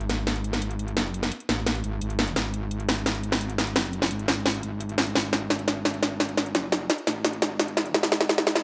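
Futuristic and dark, this 8.6-second cut from a longer dark technical drum and bass piece at 172 BPM in straight 4/4, tuned to A4 = 437 Hz, builds up over a drum fill from an up-front, tape-warm electronic kit with a cracking snare and metallic hi-hats, re-recorded in a small room, above a metallic, wobbling FM bass that sits low between F#1 and A1, distorted, compressed and thickened with chorus, all under light reverb and a high-pass filter.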